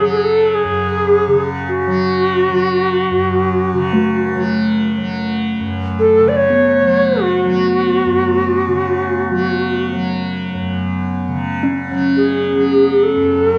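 A reedy, bright cedar flute carries the melody up front with vibrato and a chiffy tongued attack over a buzzing, shimmering tanpura drone, joined at 3.9 seconds by a ringing quartz singing bowl with slow beating, in a spacious, haunting free-time meditation piece with warbling old-tape pitch drift and light reverb, cut from a longer work.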